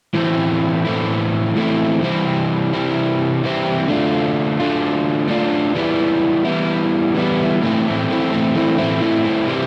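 Bittersweet and restless, this short rock excerpt, cut from a longer piece, centers on a single crunchy overdriven electric guitar playing solo in a straight 4/4 feel. The guitar sits up front, picked and double-tracked, with a warm, gritty edge colored by cassette tape. Its line ranges from A2 to F4 as the harmony moves through Am, C, Dm and Em before returning to Am at 7.6 seconds, where a new section begins and carries through to the close at 9.7 seconds. A moderate, lush hall reverb with a long tail surrounds the playing, lending it an airy, spacious halo. The overall sound carries the intimate, slightly worn character of a home recording made on cassette.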